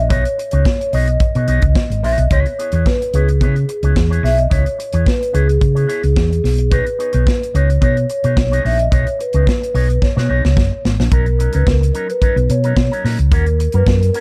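A straight 4/4 disco groove at 109 BPM rides on a tight funk drum kit with a tight kick, medium-tuned snare and hi-hat, sounding distant and roomy, plus a round, hollow-body short-scale electric bass that sits up front, with a drum fill from 10.0 to 11.1 seconds leading into a new section over B major 9 and D# minor 7 chords. A mellow vibraphone played with soft mallets carries the sultry, glamorous melody with ringing motor vibrato and tape echo, while a clean, twangy picked electric guitar through an envelope filter adds scooped accompaniment beneath. The production is dark and dry, and the excerpt is cut from a longer piece.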